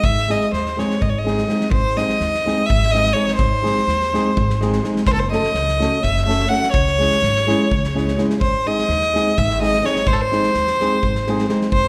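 Fiery and virtuosic, this Balkan wedding-band folk excerpt in 7/8 at 251 BPM in G# phrygian dominant features a rich, close bowed violin carrying the melody up front with smooth vibrato, a dark thumb-plucked flamenco guitar accompanying from 0.3 seconds, a woody pizzicato upright bass, and a loose drum kit with fat snare and punchy kick sitting in the background, heard in a reverberant recital hall as the chords move from G# through F#m and C#m back to G#.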